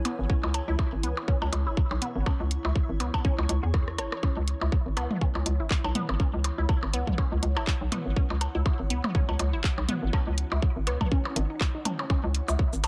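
Minimal techno at 122 BPM in 4/4, swung at 56% on the 16ths and sitting on C# minor, this cut from a longer piece feels cool and quirky. A hollow, knocking FM bass sounds from the very start, bouncy and punchy with a fast attack and decaying tail, ranging from G#1 to E2 and pumping under sidechain, and a tight, up-front electronic kick joins it at 0.3 s. A garage drum kit of cabasa, handclaps, warm hats and rim click mixes with electronic percussion blips and toms sent through tape echo, and a drum fill breaks in from 3.7 to 4.2 s. The resonant blip pluck carries the riff between B3 and C#5, a juicy, squelchy sawtooth sound with a sub octave, noise layer, moving notch and filter pluck, coloured by phaser, tape echo and sidechain pumping. Behind it all in level, a granular cloud pad spans E4 to C#6, blurred and mellow with a slow attack, long release and built-in reverb. The digital ambience is echo-heavy throughout.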